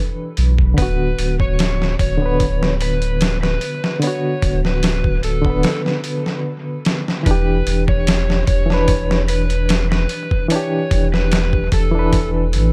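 A barky, reedy electric piano with tremolo and tape echo opens this hypnotic, melancholic trip hop passage at 74 BPM in E dorian, moving between Em7 and D6 over a round, deep sine sub bass and a gritty, compressed sampler-style drum kit with a thumpy kick and overdriven grit. A dark, overdriven slide guitar carries the melody from 0.8 seconds, its tape echo blending into the echo-heavy digital ambience. A break arrives at 5.6 seconds before the music returns to Em7 at 7.3 seconds in this fragment cut from a longer piece.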